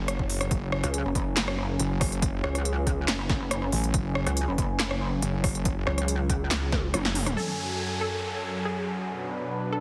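Heavily compressed to a radio-like sheen with light digital ambience, this cut from a longer wobble dubstep piece opens in a chaotic half-time drop where a saturated sawtooth wobble bass and a pulsing, detuned pluck wobble bass sit up front over an overdriven, punchy electronic kick and a crisp dance drum kit re-recorded in a large room, beneath a lush, bright unison pad with chorus, phaser and sidechain pumping, until a drum fill at 6.7 seconds leads at 7.4 seconds into a faint, wave-folded unison pluck with dub echo and cassette tape colour alongside an up-front downlifter, as the pad and dance kit carry on.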